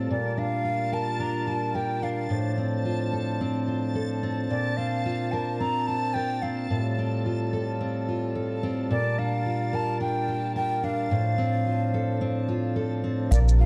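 The recording has a dark production with light reverb, and a fingerpicked steel-string acoustic guitar sits up front, its full-bodied arpeggios softened by a low-pass filter and marked by an occasional finger squeak. This hopeful, delicate folktronica piece, cut from a longer work, has a gently swung feel. A reedy, breathing pedal harmonium holds mellow sustained chords beneath it, moving through Gm7/Bb, Dm7/A, Bbadd9 and Fadd9/A. High above, a reversed, granular swelling texture adds a dreamy, detuned shimmer soaked in its own reverb. A bright baroque flute carries the melody with an airy, straight, tongued tone trailed by delay. At 13.3 s, just before the cut, a sweet bell-like celesta note, a round sub bass, crisp electronic hi-hat and shaker, and a very quiet punchy kick drum all arrive.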